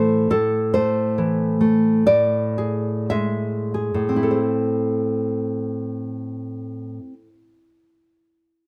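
Close, detailed microphones and a light touch of reverb place a nylon-string guitar up front, so its deep, warm classical tone feels intimate. This short cut from a longer romantic piece for solo classical guitar is in A minor and 2/4, with a free, rubato feel that moves between 46 and 71 BPM. The fingerpicked guitar ranges from A2 up to E5 and carries the whole performance from 0.0 to 7.3 seconds. The opening phrase slows down over its first 4.4 seconds, moving from an A5 chord to Eadd11/A at 2.1 seconds. A new passage arrives at 4.4 seconds on A minor, keeping the passionate, intimate mood.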